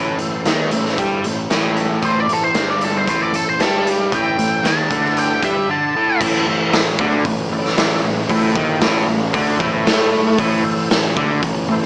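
Blues rock power trio with a southern rock edge, this brooding, heavy excerpt moves at 115 BPM in 4/4 in A minor, built on a biting, double-tracked overdriven guitar riff, a growly fuzz picked electric bass and an up-front, gritty garage drum kit with punchy kick and a pumping stone-room sound that enters at 0.2 seconds. A thick overdriven tonewheel organ holds sustained chords in the background with key click, chorus vibrato and a slow rotary speaker, while a dark octave-fuzz lead guitar with wah plays the melody from 2.0 to 6.2 seconds. The mix carries moderate studio reverb and a small-speaker character.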